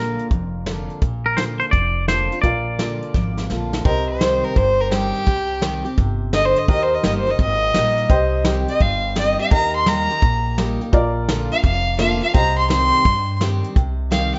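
Honky-tonk classic country in C minor at a swung 170 BPM, dusty and brooding: a twangy electric guitar carries the melody until 3.5 seconds over clear upright piano, bright picked acoustic guitar, growly pizzicato upright bass and a soft brush drum kit with a punchy kick, whose fill at 3.1 seconds leads into a nasal, earthy fiddle solo with light vibrato from 3.9 seconds to the end of the excerpt, the mix sitting in a small room with moderate reverb and a rough, dull-topped home-demo sound.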